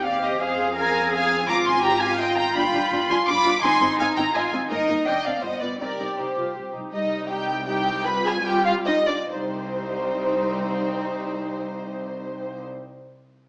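A dark, woody first violin section carries the melody up front with light vibrato in this quick, dramatic classical-period movement for string orchestra in triple time, cut from a longer piece. A pure, floating second violin line, a lush viola accompaniment with a smooth top, a warm cello section and a close, soft-attacked double bass section fill out the texture, every section bowed sul tasto, while the urgent motion slows between 6.4 and 9.3 seconds before a new section arrives. A wet recital hall reverb surrounds the strings, heard through a small-speaker sound.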